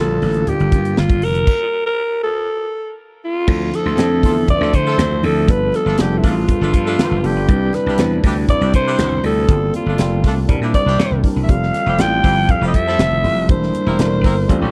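A breathy, raspy alto saxophone carries the melody over worn, slightly out-of-tune tine electric piano with light overdrive and subtle chorus, a hollow, flute-like soft pad and a growly, punchy slap bass, while a tight, up-front funk drum kit with a high-tuned snare and very quiet, soft-handed congas drive this slick, urban 1980s jazz-funk pop passage through a brief stop from 1.5 to 3.5 seconds before a loose horn section with light vibrato and octave doubling joins at 3.9 seconds, all in a dry, close 1970s-style studio sound.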